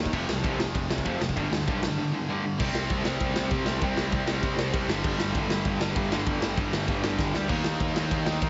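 Three bright distorted electric guitars, two of them scooped and one tight and double-tracked, open this upbeat, energetic punk rock excerpt at 196 BPM, sitting in the background alongside a growly, fuzz-laden picked bass, while an up-front raw garage drum kit with a punchy kick, gritty saturation and a pumping stone-room sound enters at 0.1 seconds. The riffs move through F5, G, C5, G5 and Eb5, shifting to a new section at 2.6 seconds, with a drum fill at 7.2 seconds. The mix is dry and heavily compressed, with a squashed, radio-like tone and a rolled-off top.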